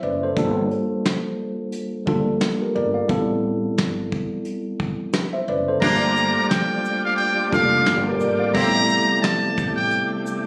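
A buzzy, metal-muted trumpet carries the melody from 5.8 seconds, its breathy jazz line sitting up front over a worn, slightly out-of-tune tine electric piano with cassette-tape grit that opens this moody, tough boom-bap hip-hop passage cut from a longer piece. A dark, smooth brush kit with a tight kick and a woody pizzicato upright bass hold the swung groove beneath, while a gritty tonewheel organ with slow rotary speaker and a distant horn section with tape echo join alongside the trumpet. The whole thing sounds as if captured on a phone in the room, with light reverb around it.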